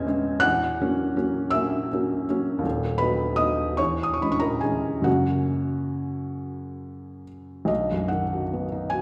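Nostalgic and dreamy, this short fragment of a romantic classical nocturne unfolds in 12/8 with free rubato on a solo felt-muted upright piano, whose soft, mellow, intimate tone, short sustain and audible action noise sit up front, while a wet recital-hall reverb places the listener further back in the room as the harmony drifts toward a resolving B chord at 7.7 seconds.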